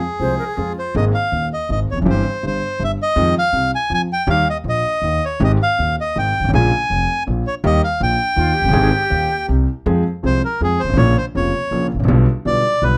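Sultry and melancholic, this short tango excerpt moves in a rubato three-beat feel, cut from a longer piece. A reedy, dark bandoneon carries the melody up front from the very start, its mid-forward tone sitting at the center of the sound. A warm concert grand piano supplies the accompaniment, intimate and smooth with deep bass, a vintage character and audible action noise, while a pizzicato upright bass on gut strings adds a woody, thumpy low end. A breathy concert flute appears only briefly as a second line, from 0.2 to 1.0 seconds and again from 8.4 to 9.7 seconds, its tongued, expressive vibrato and lifted highs touched by a slapback echo. The harmony opens on F minor and drifts through major-seventh and minor-seventh colors before a new section at 9.9 seconds returns to F minor and ends on an unresolved G7 over B. Close, detailed microphones and light reverb keep the ensemble sounding near and personal.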